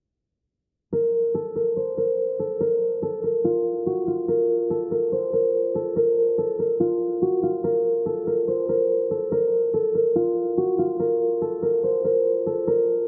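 Tense and menacing, this half-time hip hop fragment, cut from a longer piece, sets a bright, ringing, thumb-plucked concert harp up front on a mid-register melody from 0.9 to 13.1 seconds, its tone shaded by a low-pass filter and digital delay and moved by a filter sweep over the same span, all within a dark production and the moderate reverb of a scoring stage.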